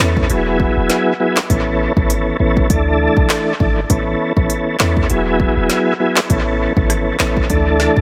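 An echo-heavy mix with light reverb carries this summery, bouncy dancehall excerpt at 100 BPM in A major with lightly swung sixteenths, where an up-front tonewheel organ, smooth and clean with chorus vibrato, fast rotary speaker, sidechain pumping and dub echo, moves through Eadd9, Aadd9 and Dsus2 over a dark, boomy 808-style sine bass with fast attack and decay, while a tape-warm electronic afro-pop kit, set up front, drives the groove with a deep kick, woody snare, crisp hi-hats, rim clicks and handclaps soaked in dub echo.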